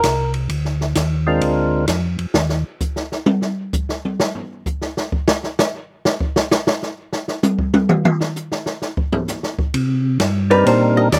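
A swung 4/4 groove at 130 BPM drives this soulful, greasy soul jazz organ trio in Bb mixolydian, where a dark, clean hollow-body archtop guitar with slapback echo and a round, lightly overdriven tonewheel organ bass with slow rotary speaker frame a brief, fat, percussive organ melody, while an acoustic drum kit with dark cymbals and a boomy kick takes a solo from 2.3 to 9.7 seconds before the organs and guitar return near the close.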